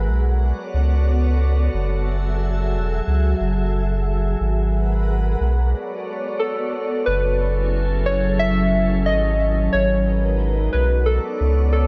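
Intricate and cerebral, this IDM excerpt moves at 90 BPM in F# minor, with a glassy FM pad holding slow-blooming, ethereal chords through a built-in reverb and ensemble chorus while a round, sine-like sub bass sits deep underneath, both sounding from the start. After a break at 5.7 seconds, warbling lo-fi synth keys enter at 6.4 seconds with a nostalgic, detuned melody coloured by chorus and digital delay. Chords such as Bm9, F#m9 and G#m9 cycle under a light digital ambience.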